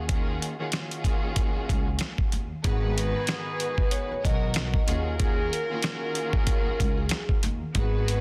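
A dense, heavily limited mix in a small room carries this tough, reflective boom-bap hip-hop cut at 94 BPM, swung on the sixteenths and moving from D#m11 to G#m9 and back. A gritty, compressed sampler-style drum kit sits up front with a thumpy kick, medium-tuned snare, rim click and hi-hat, over a woody pizzicato upright bass and a lush, bowed string section given a cassette-tape tint. At 2.6 seconds a mellow, ringing vibraphone with soft mallets and slow motor vibrato takes the melody, joined almost at once by distant, roomy stabs from a clear horn section touched with digital delay.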